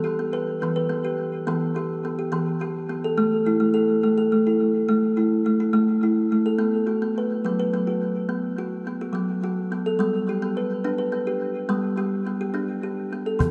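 A slow, straight 6/8 pulse at 70 BPM, counted in dotted quarters, carries this hypnotic, meditative world piece in B minor, tuned slightly low at A4 = 439 Hz and cut from a longer work. A kalimba plays arpeggios from the start, spanning E3 to B4, its plucked, woody tone ringing with a hollow-box body and the click of a thumbnail pluck, placed up front with a vintage, band-limited character and a diffuse ambient delay. The harmony moves from Em to A5, then shifts at 6.6 seconds into a second section on B5 before settling on G. A snappy acoustic cajon with snares, close and up front, appears only at 13.4 seconds, just as the excerpt closes. A wet echo chamber reverb with a 2.4-second tail surrounds the music, giving the production a dark, warm atmosphere.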